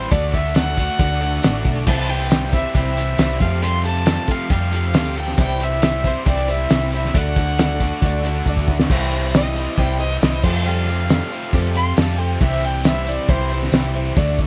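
A dark, dry production with little reverb frames this 137 BPM slice of folk rock and heartland rock in C major, cut from a longer piece and hopeful in mood. Up front sit a cloth-damped, thuddy drum kit with a fat snare, tight kick and muffled cymbals, and a round, punchy hollow-body short-scale bass played with a pick. A double-tracked overdriven electric guitar carries the riff. Behind it, a bright, shimmering twelve-string acoustic guitar picks its accompaniment, a very quiet tonewheel organ holds sustained chords with key click and a slow rotary speaker, and a jingly tambourine adds percussion. The reedy, gut-string fiddle leads the melody from the start, and after a drum fill at 8.5 seconds it takes a solo from 8.9 seconds, stopping at 13.5 seconds as the band carries on over a straight 4/4 progression of D, C and Fadd9.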